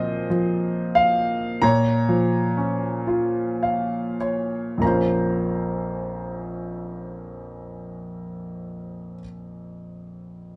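In a rubato 6/8 at 31-47 BPM counted in dotted quarters, this short cut from a longer classical piece for solo piano unfolds in Bb minor with a wistful, reflective mood, slowing down over the first 4.8 seconds as a fill arrives at 3.1 seconds. A clear, intimate grand piano sits up front across a range from Bb1 to Bb5, its natural tone carrying audible action noise, while the harmony drifts from Bbsus2 to Bbm and then to Bbmadd9 when a new section begins at 4.8 seconds. Moderate small-room reverb surrounds the instrument, which plays alone until 10.6 seconds.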